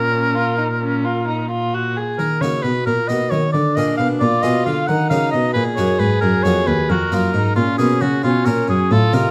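A clear, vibrato-tinged oboe sings the solemn melody up front in this grave, baroque-style sonata movement in Eb minor, moving in a straight 12/8 at 89 BPM (dotted quarters). Beneath it, a nasal, distant gut-string violin traces a second line while a full, plucked Italian-style harpsichord with two sets of strings fills in the accompaniment. A dark, smooth-topped cello anchors the bass close up, and a moderate recital-hall reverb surrounds this brief fragment cut from a longer piece.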